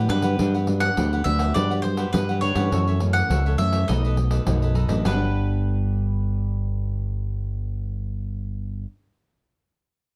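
Samba and choro in G major at 103 BPM in a straight 4/4, this short excerpt cut from a longer piece has a sunny, playful mood. The mandolin carries the melody with a round, double-stringed, picked tone, while the crisp cavaquinho and a fingerpicked nylon-string guitar, sitting in the background with audible finger squeak, fill out the accompaniment. A bright, direct fingered electric bass sits up front as the loudest part, and a jingly pandeiro played with soft hands adds percussion until it stops at 5.2 seconds. The harmony moves from Gmaj7 through F#m7 and B7 before returning to Gmaj7 at 5.1 seconds, where a second section begins. Light reverb and a dark, warm production shape the overall sound.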